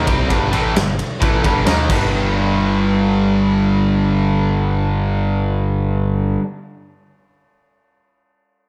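Brooding and swaggering, this free-time classic rock fragment puts a bright, double-tracked distorted electric guitar riff up front over a dark, round, punchy overdriven picked electric bass, while a huge arena drum kit with a fat snare, crash and ride cymbals and kick plays only from 0.1 to 2.0 s, the harmony moving from Gm to G5 at 1.9 s within a big arena sound and moderate hall reverb.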